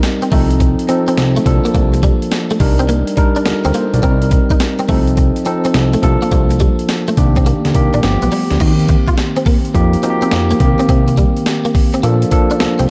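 Slick and punchy, this new jack swing R&B cut moves at 105 BPM in 4/4 with a 67% sixteenth-note swing, built on a gritty, compressed sampler-style breakbeat kit with a thumpy kick, high-tuned snare, hi-hat and crash sitting up front. A fat, saturated analog bass enters at 0.3 s with a thick, detuned, wave-folded tone, while a clean tine electric piano comps through chords like F7/C, Bbmaj7/C and Ebmaj7/C. A bright, direct-recorded electric guitar plays a picked riff colored by ensemble chorus, all set in a dark production with a moderate plate reverb and a shift to a new section at 8.6 s.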